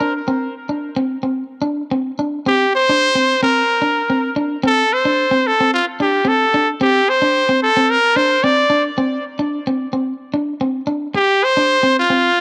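This highlife excerpt has a warm, joyful mood, with a light swing on the sixteenths in 4/4. A punchy, bright trumpet carries the melody as an up-front solo in a pop style. Its vibrato-laced line spans F4 to D5 and is trailed by tape echo. Beneath it, a clean, warm electric guitar plays picked accompaniment over a single Csus2 harmony, mixed a little lower than the horn but still close. Both parts play from the start, the guitar stopping at 12.3 s and the trumpet at 12.4 s, while a moderate spring reverb and small room ambience give the clip an intimate space.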